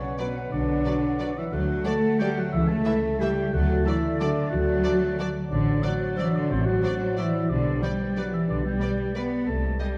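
This short passage, cut from a longer piece, opens with the full woodwind and brass color at once: a small flute group sitting distant in the background, a solo oboe and a very quiet clarinet, both roomy and classical in style, and a dark bassoon underneath, while a mellow, tight French horn section holds sustained chords. A very quiet concert harp rings through fingerpicked arpeggios, and a warm cello section carries the bass. The upper strings enter at 0.2 s, where the violins take the melody with expressive vibrato and portamento, a second violin line and a lush, very quiet viola section filling the middle, and at 0.5 s an up-front double bass section with a rich, even tone joins the cellos. It is an elegant, sweeping orchestral ballroom waltz in 3/4 at 181 BPM, its uneven beats and rubato giving the dance a breathing, flexible lilt. The harmony moves from B minor through D and A/C# before settling into G major from 5.5 s, passing through D7/A and G/B toward a closing Am7b5/C. 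A moderate scoring-stage reverb and a dark, warm production give the ensemble a soft, enveloping sheen.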